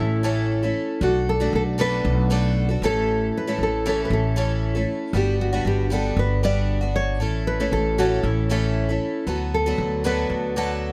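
A fingerpicked nylon-string guitar carries a heartfelt, carefree melody in this short acoustic pop excerpt at 116 BPM, over a shimmering, octave-doubled twelve-string acoustic guitar with audible finger squeak and a woody, thumpy pizzicato upright bass, all three playing throughout the 10.9 seconds in a close, dry, detailed sound as the chords move from A through Bm7, Gmaj7 and D6.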